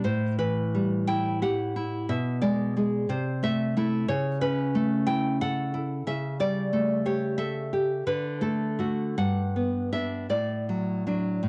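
This home recording carries a cassette-tape character, with a light, small-room reverb around a solo nylon-string guitar placed up front. It is a tender, romantic classical guitar piece in 6/8, played with free rubato at a slow 50-62 BPM counted in dotted quarters, and tuned to A4 = 438 Hz. The fingerpicked guitar spans G2 to G5 with an acoustic, warm tone, and audible finger squeaks add a human touch. The harmony drifts through A5, G#dim/B and Am/C before settling into D major at 4.1 s. It then moves through A/C# and A7/C# to D, Gmaj7 and D/A. This warm, brief fragment of about 11.5 seconds is cut from a longer piece.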